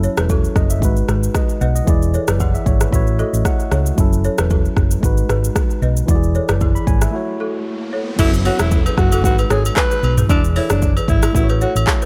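In a digital ambience, this smooth, hypnotic afrobeats excerpt at 114 BPM in F# dorian rides an up-front electronic drum kit with a deep kick and metallic hats and a dark, round hollow-body bass beneath a clean tine electric piano and a woody balafon riff with tape echo in the background; risers and downlifters sit far back from 7.2 seconds, and at 8.2 seconds a breathy, raspy alto saxophone with vibrato and tape echo takes the melody alongside close, dry agogo bells and woodblock.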